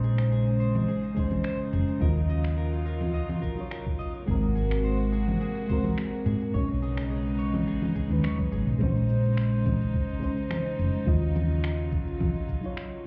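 Relaxed and warm, this sunset chillout excerpt drifts over soft, warbling FM electric piano chords with chorus and delay, floating bowed chamber strings, a round, dark hollow-body bass up front, a slightly broken-up, twangy guitar picking delayed arpeggios until 8.7 seconds, and a tape-warm R&B kit of congas, finger snaps, shaker and toms joined by a knocking electronic kick from 1.2 seconds, all heard muffled as if through a wall, bathed in club reverb, with a drum fill at 8.2 seconds.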